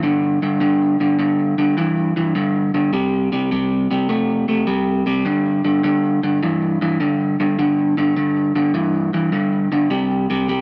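An electric guitar through a small old amp, slightly broken-up, picked, compressed and up front, plays alone in this soulful, swaggering blues excerpt at 103 BPM in 4/4 with a swung eighth-note feel, moving over G5 and C5 power chords in a low register from G2 to A3, set in a moderate plate reverb for its 10.6 seconds.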